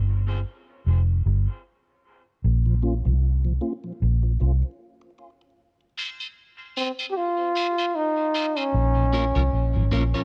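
A dark, round, foam-muted electric bass opens this meditative, spacious reggae fragment under a filter sweep, joined at 2.7 seconds by a soft, flute-like tonewheel organ with chorus vibrato and key click, then at 6.0 seconds by a twangy, slightly broken-up picked guitar with dub echo and a brief woody, slightly detuned upright piano stab, before a clear trombone with light vibrato carries the up-front melody from 6.8 seconds over a swung sixteenth-note feel and studio reverb.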